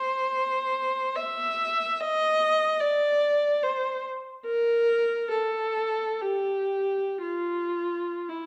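Yearning and lonely, this short classical excerpt features a single bowed viola playing freely expressive lines in free time, moving between E4 and E5 with smooth vibrato and an even, up-front tone. The sound sits in a wet recital hall reverb that lends the solo voice a sense of space across its 8.5 seconds, cut from a longer piece.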